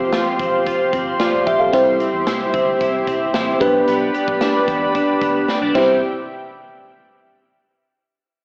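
1980s-style pop at 112 BPM in C major, uplifting and nostalgic, this excerpt opens with a lush, dreamy FM electric piano with a soft pad layer, colored by chorus and phaser, over a smooth, detuned analog pad sitting up front, while a clean, compressed electric guitar plays a riff through ensemble chorus and tape echo. A dark, round, foam-muted bass stays in the background beneath a big rock drum kit with a punchy kick, bright cymbals and tambourine, which enters at 0.1 seconds and plays a fill from 5.5 seconds. The chords move from Fsus2 through C and G/B, and the whole excerpt carries a cassette home-recording, AM radio character in a moderate booth ambience.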